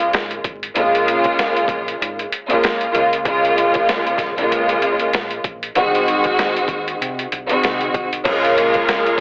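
Crackling vinyl and a squeezed, telephone-like radio tone with light reverb frame this tough, gritty boom-bap hip-hop excerpt at 96 BPM in Bb minor with swung 16ths, where a lush, bowed string section run through cassette tape carries the Bbm7, Db6 and Ab7/C chords up front over overdriven, thumpy sampler drums with a medium-tuned snare and a round, dark fingered bass tucked behind, until at 8.2 seconds a mellow soft-mallet vibraphone melody arrives, joined at 8.3 seconds by a very quiet, reedy tonewheel organ with fast rotary speaker and distant, roomy saxophone-section stabs.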